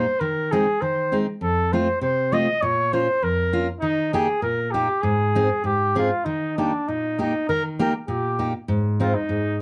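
A flugelhorn and a fingerpicked steel-string acoustic guitar open together in this short alpine folk passage, cut from a longer piece and played in the manner of an alpine dance band. The mood is bouncy and jolly, set in 2/4 with a loose, rubato feel. The flugelhorn carries the melody as a solo voice in a classical style, up front yet with a distant, roomy quality. Beneath it, the jumbo guitar supplies the accompaniment with the warm ring of fresh strings and an audible finger squeak. The harmony moves through Ab/Eb, F, Bbm and Eb before settling on Ab, then a new section at 6.3 seconds rests on Eb and returns to Ab at 8.7 seconds. A moderate small-room reverb surrounds the pair.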